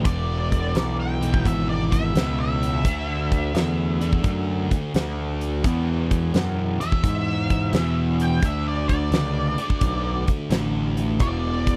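A dry, close 1970s-style studio sound frames this swaggering, raunchy blues rock and southern rock power-trio cut, swinging at 86 BPM as a sludgy, double-tracked overdriven guitar riff and a bright, punchy fuzz bass sit up front with a huge arena drum kit's fat snare and punchy kick, while a dark octave-fuzz lead guitar with wah adds a high melody over chords moving between E and D.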